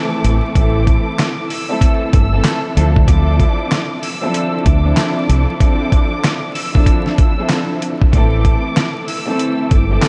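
A dark string section and a violin section open this gritty, dark boom-bap hip-hop excerpt at 0.0 s, the strings bowed with vibrato and a woody, lush, up-front body while the violins sing a focused, high melody through a diffuse ambient delay. At 0.2 s a sampler-style soul drum kit arrives, dusty and compressed, with a thumpy kick, fat snare, hi-hat and handclaps set up front, alongside a deep dub fingered electric bass that sounds round and punchy. The groove sits at 95 BPM in 4/4 with a 60% swing on the sixteenths, moving in A minor from Am to Dm7 at 2.8 s and back to Am at 8.1 s. The whole mix is dreamy and soaked in a cathedral reverb, dressed with vinyl crackle and a muted, rolled-off top end that gives the strings a smooth, hazy sheen.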